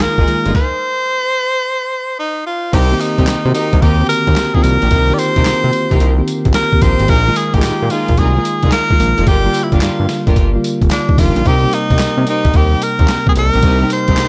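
Slick, punchy digital ambience frames this 110 BPM new jack swing excerpt in C minor, where a bright, up-front tenor saxophone with vibrato and delay carries the melody over soft, round electric-piano-like synth keys with chorus, background string stabs, a fat, detuned sawtooth analog bass with a filter sweep, a gritty, pitched-down boom bap sampler-style drum kit with a thumpy kick, and very quiet, distant group handclaps, with a stop from 0.5 to 2.7 seconds before the groove resumes on Cm7.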